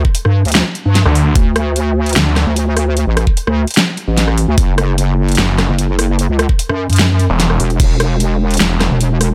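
A half-time groove in 4/4 drives this chaotic, heavy stretch of wobble dubstep, cut from a longer piece. An electronic kick drum with a knocking, layered punch sits up front until 7.9 seconds, alongside a produced dubstep kit of huge snare, metallic hi-hats, rim clicks and crash cymbal with a tape-warm edge. Underneath, a wobbling square-and-sine bass, detuned in unison and thickened with chorus and overdrive, holds the low end with a sustained, compressed weight. A snarling distorted saw bass cuts in at 1.1 seconds and returns at 5.4 seconds, its growling, resonant tone bright and aggressive with a moving notch. The mix is dry, with each part pushed forward over chords moving from G5 through D5 and F#5 to E5.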